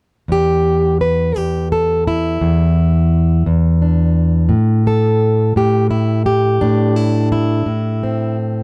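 A fingerpicked, plugged-in parlour steel-string acoustic guitar, boxy and up front with fresh strings and audible finger squeak, plays alone from 0.3 to 8.6 seconds in this brooding, smoky excerpt of acoustic country blues in a slow 12/8, moving from Em7 to Am7 at 4.5 seconds within a dark production and a modest booth ambience.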